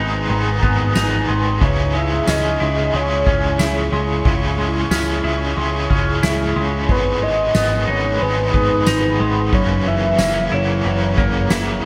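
Dream pop at 91 BPM in a straight 4/4, this short excerpt drifts with a dreamy, floating mood over chords moving from G#m to C#m and back, closing on F#7. A bright, clean semi-hollow electric guitar plays arpeggios through subtle chorus and delay, while a bright overdriven electric guitar adds accompaniment colored by tremolo and a touch of chorus. An ethereal, airy pad sustains chords high above, its detuned unison texture treated with ensemble chorus, phaser and its own reverb. Underneath, a round, punchy picked electric bass anchors the low end, and a soft-mallet drum kit enters at 0.3 seconds with a boomy kick, fat snare, ride cymbal and tambourine bathed in gated reverb. From 1.6 seconds a full, mellow synth lead layered with a sub octave carries the melody with vibrato, chorus and delay, all set in a bright 1980s-style digital production with moderate plate reverb.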